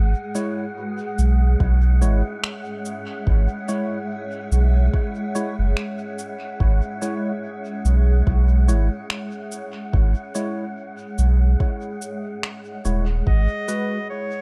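A round, deep sub bass with tube saturation anchors this meditative, hazy ambient dub excerpt at 72 BPM over a C#m chord, beneath a blurred, evolving granular cloud pad, an airy, breathy wind-like noise texture, chorused dub-echoed stabs from a bright tine electric piano, echoing electronic cabasa and finger snaps, and a soft electronic kick from 1.6 seconds, before a classical-style clarinet enters up front at 13.3 seconds as the harmony turns to G#m7 in an echo-heavy digital ambience.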